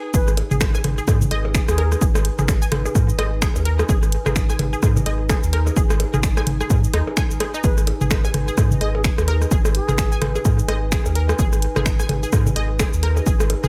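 Echo-heavy and digital, this hypnotic, quirky minimal techno excerpt rides a dry, punchy electronic kick and a thick, saturated sub bass that pumps from the sidechain, while a squelchy, resonant blip pluck riff trails dub echo, a punchy analog drum machine adds finger snaps, hi-hat and shaker, an overdriven click kit from 0.3 s scatters rim clicks, toms and blips, a dark, warbling tape-like pad hangs behind, and a pure wooden flute with vibrato surfaces distantly through analog delay at 0.1 and 7.6 seconds.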